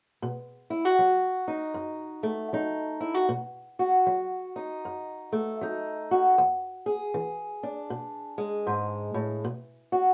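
Gritty and swaggering, this blues excerpt moves at a slow 78 BPM with a swung eighth-note feel. A lone fingerpicked old ladder-braced acoustic guitar carries the accompaniment up front, its dark, woody, boxy tone marked by old strings, moving through B7 and E7 before landing on B5 near 9.4 seconds. A moderate small-room reverb gives the guitar a close, intimate space.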